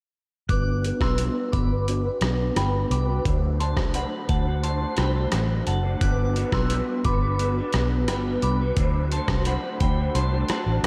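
Gritty, overdriven sampler-style drums with a thumpy kick, rim clicks and hi-hat arrive at 0.5 s alongside a round, foam-muted fingered bass, a slightly broken-up electric guitar through a small old amp with a filter sweep, ensemble chorus and vibrato, and a soft, warbling FM synth bell with phaser and tape echo, in a mix soaked in lush hall reverb for a dreamy, sunny bedroom-pop excerpt moving between Gmaj7 and D7.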